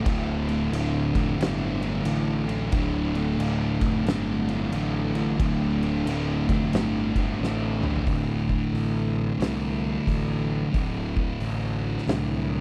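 The sound is dry and close, with little reverb, like a 1970s studio recording, and this brooding, sludgy stoner and doom metal fragment is cut from a longer piece. At 90 BPM in 4/4 with a swung eighth-note feel, it opens on a D5 chord as three fuzz guitars, all picked and distorted, grind out a riff between D2 and D3 in the background. One of them is double-tracked and drops out at 8.1 seconds, leaving the two thicker guitars to carry the riff to the end. Up front, a growly picked electric bass, overdriven and tube-saturated with both direct and amped tone, sits between D1 and C2. An oversized, low-tuned acoustic drum kit sounds like it sits in a bright stone room, with a fat snare, a boomy kick, dark cymbals and a gritty, saturated edge across hi-hat, crash and toms. A drum fill from 7.4 seconds leads into a second section that carries the heavy riffing through to the close.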